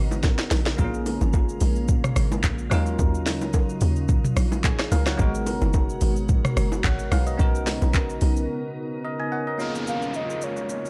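A bell-like tine electric piano with phaser, a glassy FM pad pumping beneath ensemble chorus and reverb, and a hollow, bouncy log drum bass open this late-night, soulful amapiano excerpt, joined at once by an up-front electronic kit with deep kick, sharp snare and metallic hats, plus bright, compressed bongos and congas tucked in the background. Over rich extended chords, the bass drops away at 8.5 seconds for a short break, and an electronic downlifter arrives at 9.6 seconds. A soft, round, octave-layered synth lead with vibrato, chorus, phaser and delay enters at 9.9 seconds as the cut closes in dark digital ambience.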